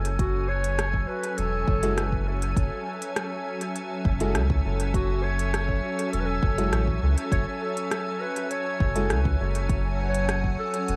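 Sub bass, organ-like pad and an organic electronic drum kit open together, setting up a deep, spacious ambient dub groove at 101 BPM in F# minor, resting on a single F#m9 chord through this short cut from a longer piece. The round, sustained sub bass sits up front, while the pure, calm pad hovers behind it with slow-attack chords, ensemble chorus and its own reverb. A distant, roomy clarinet carries the melody from 0.2 seconds in a classical solo style, its phrases trailed by dub echo. At the same moment a tape-toned electronic kick settles into the background beneath the kit's smooth hi-hat and rim click, which also carries dub echo. From 1.8 to 9.1 seconds a clear, woody upright piano adds intimate, boxy stabs with audible action noise and echo of its own. Light reverb and a layer of vinyl crackle give the recording a worn, hazy surface.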